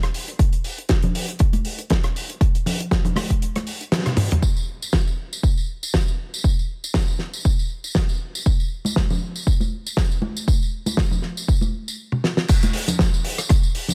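A 16th-note swing at 119 BPM in 4/4 drives this sleek, groovy nu-disco passage, cut from a longer piece. A punchy, layered electronic kick sits up front beside a dry, damped 70s drum kit with a fat snare, hi-hat, rim click, tambourine, toms and crash cymbal, both in a small room ambience, while vintage, band-limited congas come and go. The kick drops out at 3.4 seconds ahead of a band accent and a drum fill, and returns at 4.4 seconds; a second fill later leads into a drop at 12.5 seconds, with the congas back in from 8.8 seconds.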